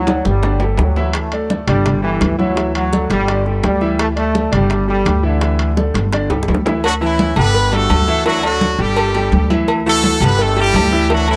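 Sunny and joyful, this straight-feel 169 BPM salsa excerpt opens on a Gsus2 chord with a punchy, up-front trombone section carrying the melody through analog delay until 5.6 seconds, over a thumpy gut-string upright bass, a polished baby grand piano, soft-handed congas and tight bongos with cowbell in the background, and ringing timbales with agogo bells, before a drum fill leads to a brilliant horn section in octave doubling taking over the melody at 6.8 seconds, all captured close and dry.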